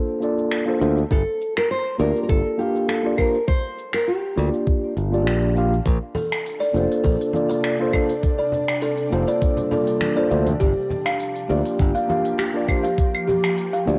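A fingerpicked nylon-string guitar carries the melody over a mellow, clean tine electric piano from the start, both colored by cassette tape and tape echo in this sunny sunset chillout excerpt. A growly, bright fingered electric bass sits up front, and a knocking electronic kick joins the deep house kit's smooth hats, claves, finger snaps and shaker to give a lightly swung 4/4 groove. The guitar stops at 5.5 seconds, and at 6.1 seconds a buzzing, woody kalimba takes up arpeggios alongside ringing congas played with soft hands. Soon after, an ethereal, airy pad enters with a slow attack, holding sustained chords through ensemble chorus and phaser. The harmony moves between Bbmaj9 and Gm7, and a moderate spring reverb lends the home cassette recording a cozy glow.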